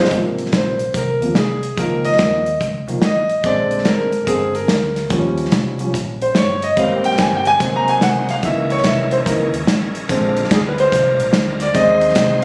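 Uptempo gospel in A-flat major, moving at 144 BPM with a swung 4/4 feel, this cut from a longer piece carries a reverent, soulful mood. A warm concert grand piano sits up front and takes a solo across the whole passage, its intimate, vintage tone revealing audible action noise and deep bass through rich chords such as Ab69, Db69, Eb9 and Abmaj9. A round, punchy fingered electric bass and a modern studio drum kit with a medium-tuned snare, tight kick, hi-hat and a dark, rolled-off top hold down the groove underneath. A bright tonewheel organ flickers briefly at the start and then returns at 6.8 seconds with full, shouting sustained chords, lightly overdriven through a slow rotary speaker with chorus vibrato and key click. The sound has the close feel of a phone recording in the room, dressed with light studio reverb and compression.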